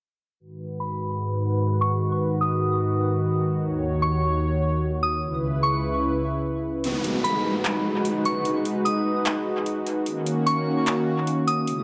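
A detuned sawtooth pad sits up front with smooth, chorused chords, while a soft, warbling FM bell melody floats high above it through dub echo in this spacious, ethereal cloud-rap excerpt with a half-time feel. A filter sweep shapes the opening until 6.8 seconds, when a booming analog drum machine enters with handclaps and metallic hi-hats, its kick muted, and a downlifter sounds. The echo-heavy mix carries light reverb.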